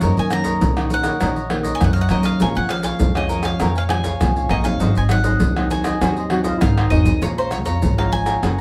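A deep surdo joins soft-handed, up-front maracas, pandeiro and tamborim over thumpy pizzicato upright bass, fingerpicked classical nylon-string guitar and crisp, bright cavaquinho in this yearning, lively samba-choro fragment, with a picked, double-strung bowl-back mandolin carrying the melody through plate reverb from 0.2 seconds, and a roomy, vibrato-laden jazz trombone adding a distant second line from 6.3 to 7.2 seconds around a drum fill, all set in a wet studio ambience heard from further back in the room.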